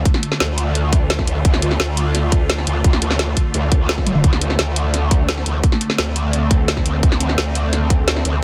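A dense, heavily limited modern master with light reverb carries this dark, tense excerpt of technical drum and bass, cut from a longer piece and held on a D minor chord. A swarming, detuned drone of granular sustained chords breathes with sidechain pumping alongside an aggressive growl bass, saturated and wobbling through a formant filter with chorus, placed up front. A tight electronic kick anchors a layered kit of woody snare, metallic hi-hats and toms, re-recorded in a small room, with a drum fill at 4.1 seconds.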